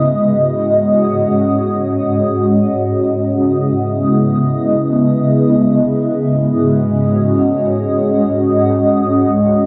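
A shimmering ambient pad plays alone, up front in a dark, lush hall, its slow-attack, sustained sine tones carrying an octave-up granular shimmer through chorus and phaser over free-time hip hop in C# minor, moving from G#7sus4 to C#m7 at 2.9 s and back at 6.2 s for a spacious, ethereal passage cut from a longer piece.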